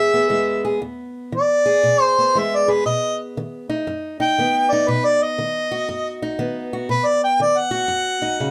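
Rollicking and swaggering, this short cut from a longer acoustic country blues piece moves at 118 BPM in 4/4 with a swung eighth-note feel. A harmonica carries the melody from start to finish, its tone warm with light vibrato and scooped notes, played in a jazz style and sitting up front yet sounding distant and roomy. Beneath it, a fingerpicked steel-string acoustic guitar supplies the accompaniment, bright and boxy with a parlour character and audible finger squeak. The harmony sits on E before shifting to B at 2.8 seconds. A moderate booth ambience and a dark, warm production shape the whole recording.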